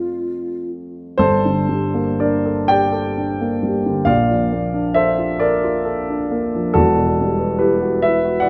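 Bathed in a moderate recital-hall reverb, this mysterious, hazy fragment of an impressionist classical duo drifts in a rubato 6/8 at 39-48 BPM in G dorian, tuned to A4 = 441 Hz, as a close-miked, airy alto flute sounds a tongued, vibrato-tinged F4 up front for only the first 0.7 seconds, while the dark, mellow grand piano, spanning E1 to G5, accompanies it from the outset and then carries on alone through Fadd9, Gmadd9, Bbmaj7 and Emadd9 harmonies until 8.5 seconds.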